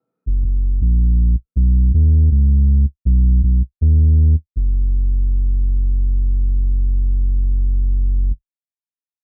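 The recording is dry, with little reverb around its single voice. This brief reggae fragment, cut from a longer piece, carries a hazy, spacious mood over a straight four-beat metre. A deep, round sub bass with a pure sine tone enters at 0.3 s and sits up front, each note striking with a fast attack and then sustaining as a mellow hum. It ranges low, from F#1 to D#2, and carries the whole texture on its own. A new section begins at 4.6 s, and the bass continues until 8.3 s.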